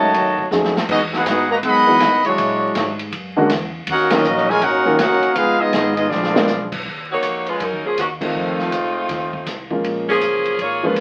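The sound is that of a very old 78 rpm record, full of vinyl crackle, with a moderate studio reverb placing the band in a modest room. This is sultry, swinging big band jazz in Eb minor at 161 BPM, cut from a longer piece. Up front, a clear trumpet section carries the melody while a trombone section, soft in attack and touched with light vibrato, plays a second line beneath it, both stopping at 6.7 seconds. A dark, mellow concert grand piano accompanies throughout, over a woody, thumpy pizzicato upright bass sitting low in the mix and a drum kit with a punchy kick, snare, ride, hi-hat and crash cymbal that adds fills and joins the band on accents. At 7.1 seconds a bright, smooth-topped saxophone section takes over the melody. The harmony passes through rich extended and altered chords such as Emaj9, Bb7alt and Bb7b9 before moving on to Ebm7, F7 and Bbm7.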